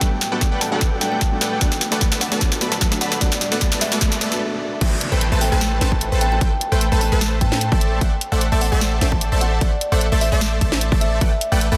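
A dense, heavily limited modern master with light reverb and digital ambience carries this emotional, bittersweet future bass fragment in a half-time, lightly swung feel. A woody, ringing kalimba melody and a punchy, detuned supersaw stab riff, both pumping against the sidechain, sit over a soft, dark, chorused pluck and a very quiet, floating bowed string section, while a hard-clipped electronic kick, a trap kit with a sharp snare and bright hats, and background risers and downlifters drive the build-up and drum fill. After a brief stop at 4.4 seconds, the drop lands at 4.8 seconds, where a deep, boomy 808-style bass enters up front.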